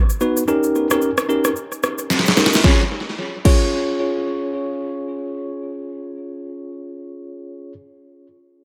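Drenched in echo under a light reverb, this short, joyful cut from a longer afrobeats piece has a breezy, close-up sound. A deep house drum kit sits up front. Its electronic, layered kick and snare hit deep, with the rim click, shaker and crash cymbal filling out the kit and a tape echo trailing behind. The 16th-note swing gives the groove an easy lilt. A bell-like tine electric piano, bright and clean, plays the accompaniment from a mid register through tape echo, sounding as if heard through the instrument's own built-in speakers. After a drum fill that ends at 2.6 seconds, the harmony moves from Eb7 to Db, and the drums stop at 3.6 seconds, leaving the piano to carry on alone until 7.7 seconds.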